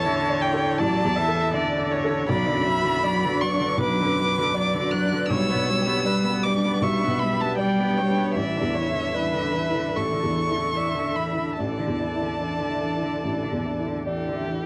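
Gritty and dry with a cassette-tape grain, this rubato neoclassical piece for piano and strings moves at 71-81 BPM in 4/4 with a longing, fragile mood: an up-front violin carries the melody with vibrato and portamento over a soft, intimate felt-muted upright piano, while a dark, woody viola sits at a distance, a rich, smooth cello second line is touched by tape echo, and a glassy, ethereal FM pad with ensemble chorus hangs in the background as the chords pass from Asus4 through Bm and G/B.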